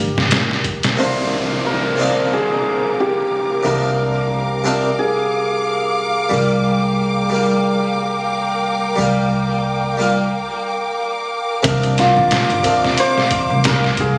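A dark, smoky trip hop piece in C minor at 90 BPM with a swung 16th feel opens on a shimmering hammered dulcimer melody, colored by vintage 12-bit sampler grit and tape echo, over woody pizzicato upright bass and a brief burst of compressed, pitched-down sampler drums with a thumpy kick. At 1.0 seconds a brilliant, airy harpsichord enters with tremolo and tape echo, along with an up-front section of softly bowed, vibrato-laden violins holding dark chords and an electronic downlifter that runs until 6.3 seconds. After a break, the gritty drums return at 11.6 seconds, and the whole track carries light small-room ambience and a compressed, phone-in-the-room sound.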